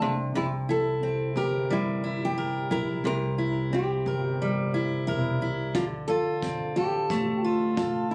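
Acoustic pop in a reflective, tender mood, this short cut from a longer piece sets a full-bodied nylon-string guitar melody with tape echo and audible finger squeak over an up-front jumbo steel-string guitar fingerpicking the accompaniment and a woody, thumpy pizzicato upright bass in the background, moving from C7 to Dm7 as a tight kick drum played with bundle sticks enters at 5.7 seconds, all heard as if captured on a phone in the room, with light club reverb and faint mains hum.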